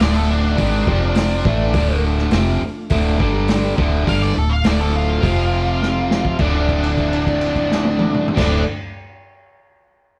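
Gritty and smoky, this short cut from a longer piece sits in blues rock power trio and southern rock territory, moving at 103 BPM in a straight 4/4 in D minor. A bright, double-tracked distorted electric guitar sits up front with a low riff, while a vintage fingered electric bass, foam-muted, round and punchy, anchors the bottom. A vintage drum kit with a muffled, lo-fi character, dark cymbals, a medium-tuned snare and a tight kick drives the groove with hi-hat, crash and toms, dropping a fill at 5.8 seconds. Above them, an octave-fuzz lead guitar with a dark, picked tone carries the melody, and a held note rings from 6.4 seconds as the harmony settles onto Dm7. Underneath, a very quiet percussive tonewheel organ adds mellow, flute-like sustained chords with key click, vibrato and a slow rotary speaker. The band sounds like it is playing live in one room, wrapped in a wet studio reverb.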